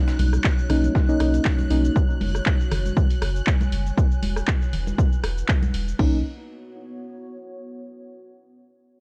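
Sunny and nostalgic, this fragment of a longer deep house track moves at 119 BPM in B major with a gentle 16th-note swing, drifting through Bmaj9, F#sus2 and Eadd9. A punchy, tape-warmed electronic kick sits up front beside a round sine sub bass with sidechain pumping. A punchy analog drum machine supplies hi-hat, rim click, handclaps, cabasa and crash, while hard-hand congas play in the background from 0.2 seconds and a gritty, compressed, sampler-style breakbeat kit adds very quiet hi-hat, shaker and snare until 1.8 seconds. A soft, nasal, dark chord stab with a filter pluck, chorus, tape echo and sidechain pumping opens the piece and returns briefly at 6.0 seconds. Behind it, a shimmering string machine with ensemble chorus lingers until 6.0 seconds, and a warbling, lo-fi, detuned square-wave pad with chorus, built-in reverb and a long release carries on to the close. The mix is dry, with a cassette tape character throughout.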